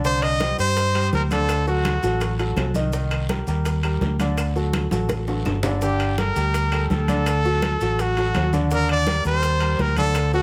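A clear concert grand piano and a round, amped fingered electric bass open this fiery, danceable salsa excerpt at 166 BPM in G harmonic minor, alongside tight, high-tuned bongos and grainy maracas from the very first moment. The bass sits up front, and the intimate piano carries audible action noise, deep lows and long sustain. A bright trumpet with vibrato and a smooth top takes the solo melody in a pop style, coloured by tape echo. It drops out at 2.4 seconds and returns at 5.8 seconds, after a drum fill beginning at 4.9 seconds. Thick-skinned, damped congas played with hard hands and ringing, vintage metal-shell timbales sit in the background. Woody claves and a raspy guiro stay very quiet. The harmony moves through Cmadd9, D and Cm7 before settling on Gmadd9, D and Ebmaj7, all inside a moderate studio reverb.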